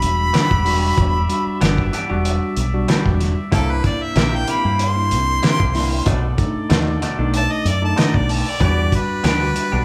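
Straight-eighth soul blues in E minor at 94 BPM, soulful and brooding, cut from a longer piece and played live in one room with a moderate large studio reverb. An up-front harmonica with overdrive, vibrato and scooped notes solos throughout over a fingered electric bass that sounds dark, round and punchy, a cloth-damped drum kit with a fat snare, tight kick and gritty, muffled top, and a bell-like tine electric piano. A clean, picked semi-hollow guitar adds bright stabs from 0.3 seconds while a vintage horn section holds sustained chords in the background through Em7, C7 and B7#9 before returning to Em7.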